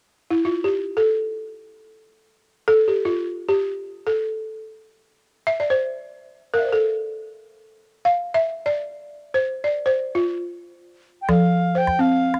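West African traditional string and xylophone music in free time and F major, this flowing, joyful fragment of a longer piece opens with a woody, buzzing balafon struck with rubber mallets, up front and colored by cassette tape, playing arpeggios alone until a bright reedy wooden flute with vibrato and a crisp attack enters at 11.2 s, joined by a small, close calabash at 11.3 s, within the short, wet booth ambience of a home cassette recording.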